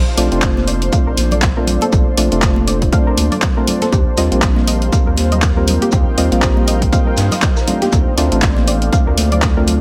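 Relaxed and warm, this deep house excerpt moves at 120 BPM in Bb major with a swung sixteenth feel, shifting from Bbmaj9 to Eb69 at 3.9 seconds and back to a rootless Bbmaj9 at 7.9 seconds. A round, deep analog bass and a hollow, percussive organ stab with chorus and digital delay carry the harmony, while an airy, breathy pad, a cloudy granular pad with built-in reverb and a gentle pluck playing arpeggios through chorus and dub echo sit in the background, all breathing with sidechain pumping. An up-front, tape-warm electronic kick leads the rhythm alongside handclaps and hi-hat from a punchy analog drum machine, a very quiet, gritty breakbeat kit with hi-hat, shaker and snare, and bright, high-tuned congas set back in a small room.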